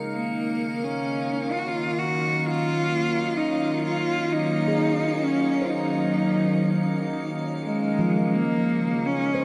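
A straight 4/4 feel underlies this spacious, melancholic ambient fragment, set in a vast, echoing space, where a bright, morphing wavetable pad with phaser sustains Ebm9 up front before shifting to Db6 at 7.6 s, a clear, focused bowed cello sings a vibrato melody from 0.1 s, and in the background a ringing, meditative handpan traces arpeggios through diffuse delay while a reedy, nasal harmonium holds a close, dry drone and a breathy, wind-like tuned noise layer hovers high above.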